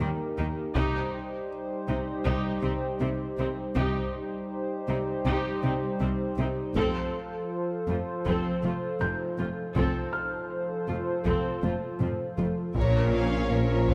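A hollow, flute-like pad with chorus sits up front over bowed viola, cello and woody double bass sections, while a felt-muted upright piano with audible action noise adds delayed high notes, taiko drums with heavy sticks enter at 0.8 seconds and fill before 12.8 seconds, where lush violins, very quiet horns and trombones, a rubbery square bass and a deep, rumbling detuned saw bass join this futuristic, vast hybrid orchestral and electronic film cue in a wet scoring-stage reverb.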